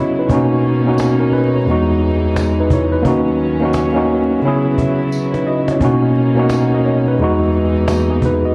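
A swung 4/4 lo-fi hip hop groove carries this dreamy, cosy fragment of a longer piece, with a worn, slightly out-of-tune tine electric piano up front, lightly overdriven and low-pass filtered, over distant, soft-attack bowed strings holding sustained chords, joined by a snappy cajon played with soft hands from 0.3 s that drops a fill at 5.1 s, and a bright, jingly tambourine from 1.0 s, set in a dark production with light reverb and vinyl crackle.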